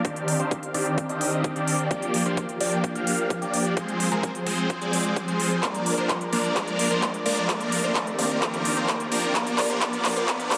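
Anthemic and powerful, this short cut from a festival progressive house track drives a build-up at 129 BPM in straight 4/4, set in C minor. A huge, euphoric supersaw lead sits up front with a bright, detuned sawtooth riff, its fast attack and sustained notes shaped by a phaser, tape echo, sidechain pumping and a filter sweep across the whole passage. Beneath it, a lush, thick unison pad with a slow attack holds sustained chords in the background, colored by chorus and phaser and pumping with the sidechain as the harmony moves through Cmadd9, Gm7, Fm and Bb. The overdriven big-room kit brings crisp hats and handclaps up front, joined by a punchy, layered electronic kick, and a drum fill runs from 5.6 seconds to the end. A very quiet riser enters at 2.1 seconds, and the dense, heavily limited master carries a light digital ambience.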